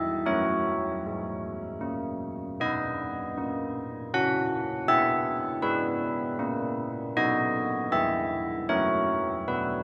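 Carillon bells carry this short classical piece alone, a tune written for church bells that feels both festive and serene. Their bronze tone rings bright and mid-forward, with a distinct minor-third overtone and the character of a worn iron clapper shaping each strike. The bells sit up front, yet a long, wet cathedral reverb with a 5.5-second decay surrounds them and lets every note bloom into the space. Moving in an unhurried three-beat metre with a straight feel, the harmony passes through F#, B and E before settling back toward F# near 8.7 seconds. The fragment, cut from a longer piece, lasts just under ten seconds.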